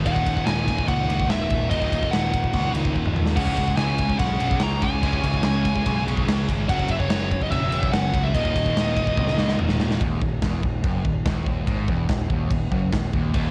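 Opening at once on a wall of riffing guitars (a bright, double-tracked high-gain part set back with cassette-tape grit, plus two very quiet, warm, sludgy overdriven ones) over a growling, overdriven picked bass, this dark, aggressive heavy metal excerpt in Eb phrygian drives at 145 BPM as an up-front, big-room rock kit with punchy kick and bright cymbals joins at 0.1 s alongside a dark, high-gain lead guitar melody that runs until 9.6 s, with drum fills and moves from Ebm through Dbm, Gb5 and Eb5 before the bright riff guitar drops out at 10.0 s and the rest return to Ebm, all carrying a small-room, home-cassette feel.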